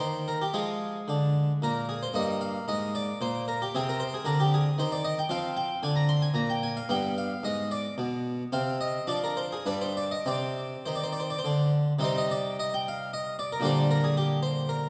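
A close-miked, brilliant harpsichord with full, plucked octave strings sits up front in this solemn, introspective baroque-style suite movement in 3/4, played solo with a flexible rubato and set in a reverberant recital hall, with a brief new section arriving at 12.0 seconds before the excerpt breaks off.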